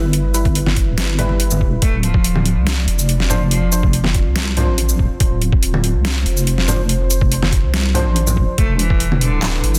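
Dense, heavily limited and lightly reverberant, this brooding deep dubstep excerpt at 142 BPM in half-time D dorian puts a chorused square-wave wobble bass up front over a muffled, thumpy electronic kick and an overdriven kit of deep snare, bright hats, handclaps and shaker, with soft-handed vintage congas and a moody, detuned sawtooth pad sitting in the background, hollow organ stabs colored by cassette tape and dub echo, and a biting, nasal bowed cello that enters at 1.8 s trailing its own dub echo.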